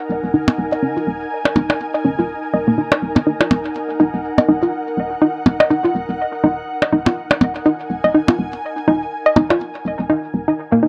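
Cool and clinical, this swung minimal techno passage puts a hollow, bouncy square-wave pluck riff with chorus, cassette tape colour and dub echo up front, with a filter sweep running across the synth arpeggio throughout, over soft, dark woody FM bass holding one low note, an ethereal airy pad with ensemble chorus and built-in reverb, and electronic percussion blips treated with delay, set in a small, wet room.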